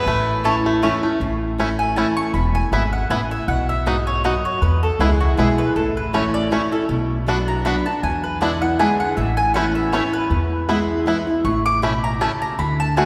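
Bathed in the long, wet reverb of a church, this driving, joyful bluegrass passage in A major swings along at 158 BPM in 3/4, with a dark, thumpy pizzicato upright bass on gut strings and a picked steel-string acoustic guitar with old, woody strings sitting up front alongside a bright, twangy fingerpicked banjo playing arpeggios, while a warm, double-strung mandolin enters with stabs at 0.4 s and takes a solo from 1.2 s to the end.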